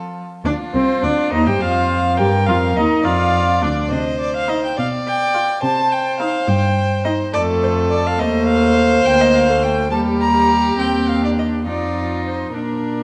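A wet recital hall and a dark, warm production frame this graceful, spirited classical-period string quartet movement in 6/8, a fragment of a longer piece. The rich, distant viola and the second violin begin together at 0.0 seconds, the up-front cello enters at 0.4 seconds with a smooth-topped bass line, and the first violin takes the melody from 0.5 seconds. All four bowed players share a reedy, gut-string, period-style tone, with light vibrato on the violins and viola.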